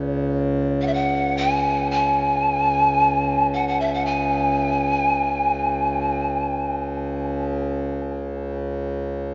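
Floating in free time, this meditative, haunting world piece, cut from a longer work, rests on a reedy, mellow hand-pumped harmonium drone that breathes low beneath everything from the opening second. At 0.8 seconds a breathy, wooden pan flute enters with the melody, its soft attack carrying a touch of chiff and an unsteady vibrato, and it sings until 6.9 seconds. A vast cathedral reverb gives the piece a deep, echoing space, while the cassette tape dulls its highs.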